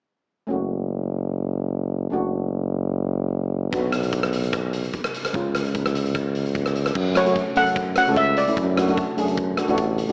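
Through a cassette-tape, small-speaker sound with light reverb, this driving, tense calypso excerpt opens on mellow double-seconds steel pan chords played with soft rubber sticks and an up-front, classical-style solo tuba on bass, joined at 3.7 seconds by a huge arena drum kit with a punchy kick, hi-hat, rim click and crash cymbal, before a bright, shimmering lead steel pan struck with hard rubber sticks carries a short melody from 7.2 to 9.1 seconds.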